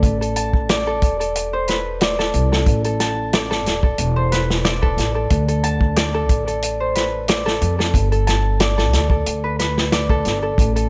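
A dry, intimate recording with little reverb places three acoustic parts up front in this melancholic, brooding trip hop excerpt, which moves at 91 BPM in 4/4 with a light swing on the sixteenths. A vintage drum kit anchors the groove with a punchy kick, a medium-tuned snare and hi-hat, its rolled-off top and natural studio-room character giving it a warm, vintage feel. Beneath it, an upright bass played pizzicato on steel strings sits low in the register with a woody tone, thickened by tube saturation. Above, a Celtic harp plays fingerpicked, ringing arpeggios between A4 and A5, with tape echo adding a warm haze to its notes. All three parts play throughout the 10.9 seconds, over a harmony that starts on Am, moves to D5 at 5.3 seconds and arrives on G at 7.9 seconds.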